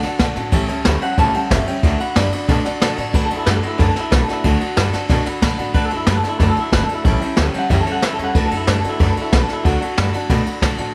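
A jazz brush kit drives a straight 4/4 at 184 BPM, its boomy kick, dark cymbals and up-front brushes anchoring a rollicking, rowdy rockabilly passage in D major, cut from a longer piece. Thumpy pizzicato upright bass on gut strings and a full-bodied picked dreadnought acoustic guitar hold down the D and A7 changes, while a dark, mellow upright piano sits in the background and drops a quick fill in the opening 0.5 seconds. Over the top, a bright, twangy, slightly broken-up electric guitar through a small old amp carries the melody with tape echo, opening with a clean solo that runs to 3.1 seconds and continuing until 10.0 seconds, all set in a small room with light reverb.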